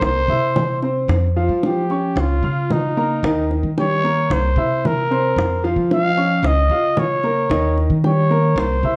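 Worn, warbling cassette tape with pitch drift and a moderate large-studio reverb colours this danceable, nostalgic excerpt of Cuban son and guajira at 112 BPM, where an up-front growling trumpet solos with a raspy, gritty edge, smooth top and light vibrato over a clear, boxy baby grand playing arpeggios, a woody, thumpy pizzicato upright bass and round, low-tuned bongos in a small room that stop at 8.8 seconds.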